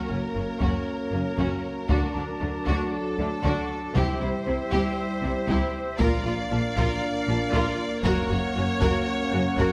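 This excerpt opens at once with the orchestral weight of a dark, epic film score at 117 BPM in a straight 4/4. Bowed violins carry the melody with a focused, vibrato-rich tone, while a second violin line sits beneath them and an intense viola section fills in the accompaniment from the background. Dark French horns with a soft attack and a distant, roomy woodwind section hold sustained chords. Cellos and a smooth, even double bass section lay down the bass line from 0.1 seconds, and a taiko ensemble struck with hard sticks enters at 0.6 seconds, sounding acoustic and live in its room. The harmony moves from F# through D, C and Bb before returning to F# near 8.0 seconds, all set in a moderate scoring-stage reverb with a faint mains hum beneath.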